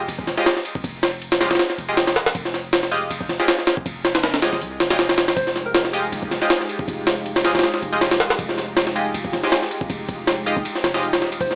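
Drum and bass with a jungle edge, this raw, frenetic excerpt runs at 159 BPM in F minor over a single Fm9 chord, driven by an up-front, overdriven sampler-style kit with a thumpy kick, high-tuned snare and ride that sounds pitched up and gritty, while a deep, mellow sine bass sustains underneath. Nasal, band-passed sawtooth chord stabs with chorus, phaser, 12-bit grit and dub echo enter at 0.4 seconds. At 5.4 seconds a silky string machine and a round, warbling FM lead join, the lead carrying chorus and dub echo, all heard through a small speaker with light reverb.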